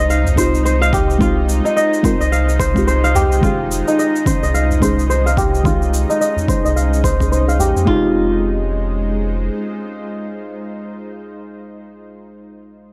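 Meditative and earthy, this short organic downtempo passage moves with a relaxed, swung sixteenth-note feel over a chord shift from Fm7 to Dbsus2/F and back. Up front, a crisp, ringing kora plays fingerpicked arpeggios through a low-pass filter sweep and analog delay until about 9.4 seconds, while a round sine sub bass with tube saturation anchors the low end. A dark, detuned chord stab with chorus, delay and sidechain pumping supplies the accompaniment, and a tense, string-like bowed drone with slow attack, vibrato and its own reverb holds sustained chords beneath it, also pumping. The rhythm rests on a punchy, overdriven electronic kick, a tape-toned shaker and a small, distant udu, all of which drop away near 8 seconds. The kora and sub bass carry on briefly after that, and once they fade, the chord stab and drone carry the final moments. The sound is dry and gritty with only light reverb and a faint mains hum, lending the recording a hardware-made character.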